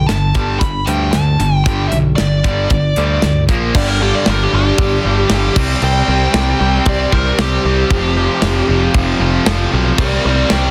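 Swaggering and anthemic, this hard rock excerpt drives along at 115 BPM in a straight 4/4, with a nasal, overdriven lead guitar through a parked wah carrying the melody and breaking into a solo at 3.8 seconds. Beneath it, a bright, cranked stack guitar and a scooped, high-gain distorted guitar sitting in the background play the riff, while a growly, punchy picked bass sits up front and a tight metal kit with a medium-tuned snare and clipped kick and snare pushes crash, hi-hat and snare through the studio room. The chords move from G5 through Bb5, C5 and F5, and the mix is dense and heavily limited with a light touch of small room reverb.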